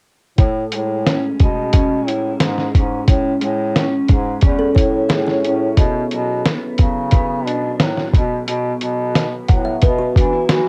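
Laid-back and sunny, this bedroom-pop fragment of a longer indie pop piece drifts along in a straight 4/4 over Amaj7, Bm and Esus2. A slightly broken-up electric guitar through a small old amp carries the accompaniment, its picked chords softened by analog chorus, warbly pitch drift and cassette tape. Underneath, a clear, vintage-sounding bass clarinet supplies the bass line up front, beside a sampler-style drum kit that is muffled, compressed and pitched down, with a thumpy kick, medium-tuned snare and hi-hat. From 4.6 seconds a woody, ringing kalimba adds a plucked second line, dressed in plate reverb, analog delay and subtle chorus. Only at 10.5 seconds does a nostalgic, detuned synth lead of square and sawtooth tones with vibrato touch in on a single sustained note, all wrapped in the light reverb of a cassette home recording.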